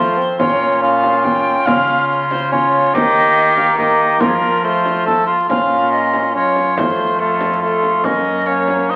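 A courtly yet rustic renaissance-style consort dance in triple time opens at once with four wind and string voices, and a frame drum joins at 0.4 s, struck with soft hands and carrying a small-room acoustic tone. An airy, chiffy alto recorder carries the melody with gentle vibrato and a soft, woody attack. Just beneath it, a warm cor anglais sings the second line up front and present, while a mellow bassoon adds light-vibrato accompaniment and a single bowed cello anchors the bass with a close, reedy, gut-string tone. The harmony moves through Bbm, Db, Eb and a suspended F that resolves to F, then turns to a fresh phrase at 5.5 s that returns to Bbm before reaching F and Gb. A stone-room reverb and the crackle of a very old 78 rpm record lend the sound an aged character, and the passage is cut from a longer piece.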